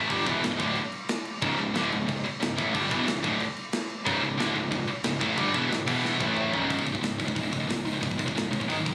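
Dark and relentless, this heavy metal passage, cut from a longer piece, drives forward in a straight 4/4 with a small-room, phone-captured sound and studio compression. Up front, a bright, high-gain guitar, distorted and double-tracked, carries the riff over a C# minor foundation. Behind it sits a raw garage guitar, overdriven and double-tracked with a warmer tone, also playing a riff until it drops out at 6.7 seconds. A growly, fuzz-laden picked electric bass, amped and overdriven, rumbles low in the background, while a tight, acoustic metal kit with bright cymbals, a medium-tuned snare and a tight kick sits up front in a big-room sound. A drum fill from 6.0 to 6.7 seconds accompanies a quick run of power chords, E5, A5 and C#5, that ushers in a closing section carried by the high-gain guitar, bass and drums.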